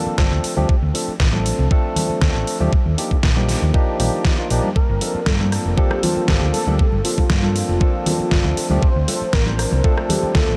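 A barky, lightly overdriven tine electric piano pumps through analog delay over a round, punchy hollow-body fingered bass, thumpy up-front electronic kick, deep-snared pop kit and ringing background congas in this sleek, cosmic nu-disco excerpt at 118 BPM in G minor, moving through Dm7 and Ebmaj9/Bb before a thick, detuned sawtooth unison lead with vibrato enters on Gm11 at 4.8 seconds, the harmony returning to Dm7 near the end.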